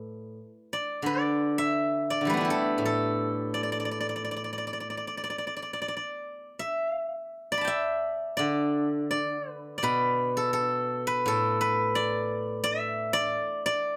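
Chinese traditional solo plucked-string music in D zhi mode, elegant and flowing, where a bright, silvery steel-string zither played with fingerpicks rings up front across a range from A2 to D6 at a rubato pulse around 75-89 BPM, captured with close, detailed microphones and light reverb in a short passage cut from a longer piece that shifts to a new section at 6.9 seconds.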